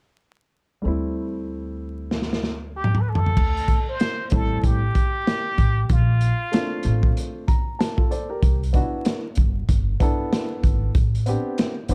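A dark, warm production with vinyl crackle and little reverb frames this cool, mellow jazz-hop fragment at 95 BPM, its sixteenths swung in 4/4. A dark grand piano with a vintage, short-sustained tone and a woody, thumpy pizzicato upright bass on gut strings open together at 0.8 seconds over a D9sus4 chord. A crunchy breakbeat kit enters with a drum fill at 2.1 seconds, its saturated, gritty sound sitting up front with a punchy kick, medium-tuned snare, dark cymbals and a rolled-off top, plus hi-hat, crash and toms. A plunger-muted trumpet carries the melody from 2.8 to 7.2 seconds, brilliant yet distant and roomy, with wah-wah inflections, light vibrato and a forceful jazz phrasing, while the harmony shifts to Bbmaj9. The piano steps forward with a fill after the trumpet drops out, as the harmony moves on through Cmaj9#11 and Am11, and a raspy, growling trombone with scooped notes appears in the background only at the very end.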